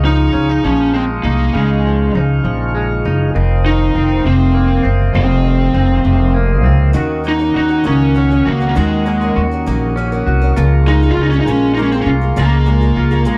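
A dry, close 1970s-style studio sound frames this aching, melancholic six-eight pop ballad, cut from a longer piece, with an up-front lead guitar through a small cranked amp singing the overdriven melody over a growly, thumpy pizzicato upright bass. A double-tracked clean electric guitar, recorded direct and twangy with a scooped, compressed edge, carries the accompaniment while a soft, flute-like tonewheel organ with key click holds sustained chords through a slow rotary speaker. At 6.9 seconds a woody picked steel-string acoustic guitar with old strings joins in arpeggios as the chords move from Dbadd9 and F7sus4 to Ebm7 and Bbm7.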